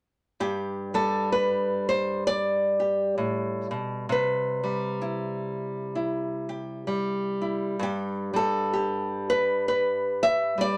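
A relaxed 65 BPM pulse in 4/4 carries a gentle swing on the eighth notes, giving this short folk fragment an easy, unhurried lilt. A lone nylon-string guitar plays fingerpicked in G major from 0.4 to 10.8 seconds, ranging from G2 up to E5 with a bright, intimate tone placed up front in the mix. The harmony moves from G to Cmaj7 at 4.1 seconds, then settles into an unaccompanied, chordless stretch from 7.8 seconds. The mood is warm and nostalgic, like a quiet reminiscence. A moderate small-room reverb adds a close, natural air around the guitar, and the tuning sits slightly above standard at A4 = 444 Hz.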